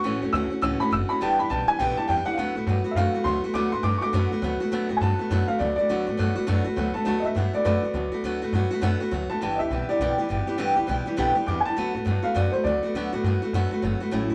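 A dark, slightly detuned upright piano with a mellow, vintage tone carries the melody and takes a solo through the opening 4.7 seconds of this upbeat, rowdy rockabilly excerpt, swinging over a picked, up-front steel-string acoustic guitar with audible finger squeak and a thumpy, woody upright bass played pizzicato on gut strings, all in a tight, wet booth ambience with a rough rehearsal-room feel, until the piano drops out at 13.2 seconds.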